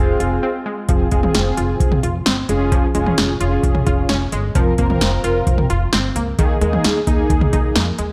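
Cool and driving, this synth-pop fragment from a longer piece moves in a straight four-beat pulse. A lush, thick unison pad with a warbling vintage sheen sounds only at the very start, ending at 0.9 s after a short break that begins at 0.4 s. A mellow synth brass part, round, dark and detuned with chorus, phaser and a filter sweep, carries the accompaniment up front, while an analog pluck spins bright, evolving arpeggios touched with a noise layer, chorus and slapback echo. Underneath, a woody pizzicato upright bass with steel strings anchors the low end, and an overdriven electro analog drum machine sits up front with a deep kick, punchy snare, metallic hats and toms. The harmony moves from Fm through Db/F and Bbsus2/F to Ebsus4, all set in light reverb and digital ambience.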